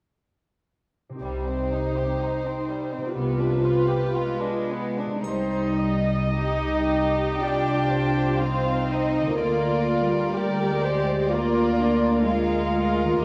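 Heard through worn, warbling cassette tape with drifting pitch and a wet scoring-stage reverb, this solemn, yearning slow romantic orchestral movement unfolds with a rubato feel. A bright, ringing concert harp arpeggiates in the background from 1.1 seconds, and bowed sul tasto strings enter alongside it: an intimate chamber violin section with light vibrato carries the melody, a floating symphonic violin section adds a pure second line, dark, woody violas give lush accompaniment, and distant cellos and double basses provide a soft-attacked bass. A close, dry triangle sounds briefly in the background between 5.2 and 7.4 seconds.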